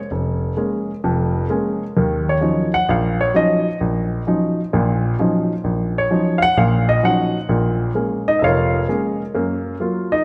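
Solo jazz at 130 BPM in 4/4 with a swung eighth-note feel, this moody, swinging excerpt from a longer piece features an intimate, up-front baby grand piano ranging from F1 to Gb5, its short sustain and audible action noise sitting in a wet concert hall reverb with a 2.0-second decay, as the harmony moves from Bbm7 through Ebm9 and back to Bbm7 before landing on Gbmaj7 at 9.3 seconds.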